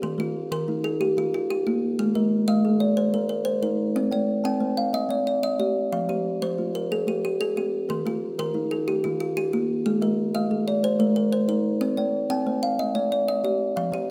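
Two kalimbas begin together at 0.0 s, both playing arpeggios in a warm, hypnotic piece of southern African traditional music. The pulse sits at 122 BPM, counted in dotted quarters, in a straight 12/8. The more prominent kalimba sits up front with a bright, ringing thumbnail pluck and a woody, hollow-box body. The second kalimba is quieter, its fingertip pluck mellow, soft and full, heard close and dry. The harmony cycles through Eb, Ab, C minor and F minor before returning to Eb, Ab and C minor. A moderate recital-hall reverb surrounds the detailed, intimate sound, and the music stops at 14.1 s, cut from a longer piece.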